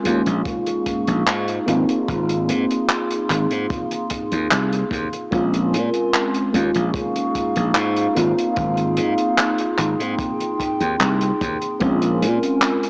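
Woozy and dreamy, this short vaporwave cut from a longer piece drifts at 74 BPM in Ab major, circling chords like Eb9sus4, Ab6 and Bbm9. A soft, round FM electric piano with analog chorus and delay carries the accompaniment over a warbling, nostalgic tape-like pad whose slow-attack chords sit in chorus and lo-fi 12-bit grit. Underneath, a bright, growly slap bass with tube saturation sits up front beside an acoustic small-room jazz kit of handclaps and hi-hat and a boomy kick, all wrapped in spring reverb and a cassette home-recording sound from a small speaker.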